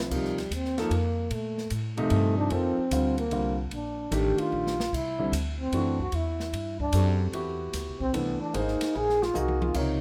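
Modal jazz in a swinging 3/4 at 149 BPM, this brief excerpt from a longer piece has an open, searching mood centered on Bb major. A breathy trombone takes the solo from 0.1 seconds, mellow and whispered with light vibrato and a soft attack, sitting up front yet carrying a distant, roomy air. Beneath it, a grand piano supplies intimate accompaniment with audible action noise, while a pizzicato upright bass on gut strings adds a woody, thumpy low end. An acoustic drum kit with dark cymbals, a medium-tuned snare and a boomy kick plays at a lower level, its airy small-room sound marked by fills at 4.5 and 9.4 seconds. The harmony moves from Bbmaj9 to Cmaj9 and then to Ab, all bathed in light reverb.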